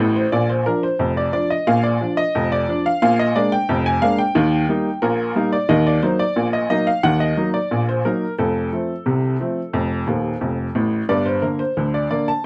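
A dry, close studio sound with light reverb and a 1970s character frames this short, playful ragtime cut from a longer piece, set in a straight 2/4. A bright, woody upright piano plays alone and up front, intimate enough that its action noise is audible and its notes ring with long sustain, moving through Bb, Bb7, Eb, Ebm, F and Gm. Brief piano fills open the recording at 0.0 seconds and return between 10.1 and 11.1 seconds, adding to its jaunty feel.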